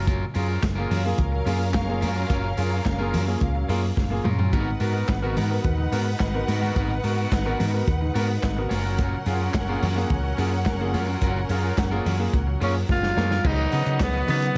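A driving, danceable disco groove opens on clear concert grand piano chords, a twangy, slightly broken-up electric guitar and a dark, round fingered bass sitting up front, with a muffled, lo-fi vintage drum kit, punchy kick and handclaps, and quiet, high-tuned congas joining at once. Lush, woody strings bowed with vibrato enter at 0.9 seconds to carry a second line, and the drums play fills just before the chord changes at 4.5 and 13.4 seconds, the second leading into a suspended harmony. A raspy, gritty tenor saxophone takes the melody at 12.6 seconds, and a very quiet, lightly overdriven tonewheel organ with key click adds sustained chords from 13.4 seconds in this short cut from a longer piece, all set in light, small-room reverb.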